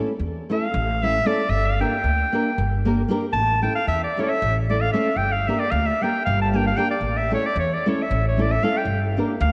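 A clear, classical-style clarinet takes the solo up front, entering at 0.5 s with a bittersweet, fiery melody over a Balkan wedding-band groove in 7/8 at 228 BPM in eighths, tuned to A4 = 438 Hz. Beneath it, a dark, fingerpicked nylon-string guitar with analog chorus and audible finger squeak alternates between A and G minor. A woody, growly pizzicato upright bass on steel strings sits up front. The whole excerpt is soaked in a lush hall reverb that gives the mix a dreamy glow.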